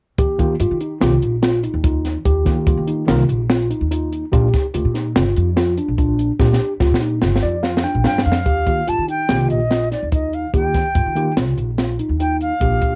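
An airy, expressive concert flute enters at 8.1 seconds with a tongued, vibrato-laden melody, sitting up front yet distant, over a driving, intricate progressive groove in 5/4, cut from a longer piece and recorded at home on cassette in a small booth. Beneath it, a woody, growly pizzicato upright bass and a dark, punchy compact cocktail drum kit with a high-tuned snare and rolled-off top hold the foreground, while a mellow, clean tine electric piano plays arpeggios through analog delay. A second tine electric piano, worn and slightly out of tune through its built-in speakers, carries the chordal accompaniment, and the drums fill from 6.4 seconds with a piano fill joining at 7.2 seconds.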